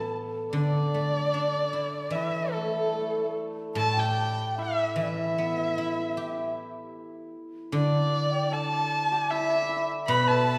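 A dark, woody erhu sings the festive, pastoral melody up front with vibrato and gliding portamento, while a breathy, very quiet bamboo xiao traces an unsteady second line, a shimmering hammered dulcimer rings out another, and a silvery fingerpicked guzheng supplies bright accompaniment, the small Chinese traditional ensemble heard from further back in a reverberant scoring stage in this fragment cut from a longer piece.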